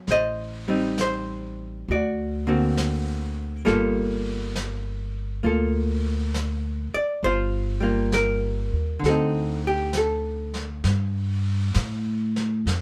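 A dark, clean archtop guitar opens this wistful, melancholic swung jazz excerpt, its picked chords moving from Am7b5 through D7b13 to a lingering Gm9, joined at 0.1 seconds by a woody pizzicato upright bass that sits up front with the guitar, and by a brushed vintage kit of snare and hi-hat with a rolled-off top in a small pumping room, all live together under light reverb until the guitar drops out at 10.9 seconds, leaving bass and brushes to carry a closing Gsus2 to the cut at 12.8 seconds.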